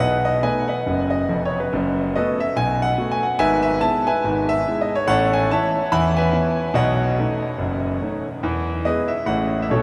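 A clear, up-front concert grand piano with deep bass and long sustain plays solo stride jazz in E major at a swinging 143 BPM, its exuberant passage cut from a longer piece and spanning F1 to B5 over chords such as B7, E/G# and B9, all bathed in a huge, wet ambient reverb that places it in a vast, echoing space.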